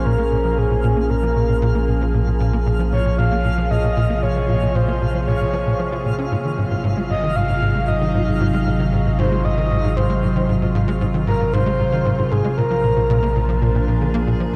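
A breathy, flute-like synth lead with vibrato carries the melody from the very start, over an evolving, detuned wavetable pad, a deep, round sub bass and a faint, twinkling granular shimmer, and a tight, punchy sequencer bass riff joins at 0.1 seconds to drive this expansive, cosmic piece of space music in a straight 4/4. The harmony moves from Bbm7 to Ab7 and reaches Bb7 at 12.6 seconds, with chorus and delay coloring both the lead and the sequencer bass while the pad and the granular layer each carry their own reverb. A huge ambient reverb gives the production a dark, enveloping depth, and the lead stops at 14.1 seconds, just before the end of this section cut from a longer piece.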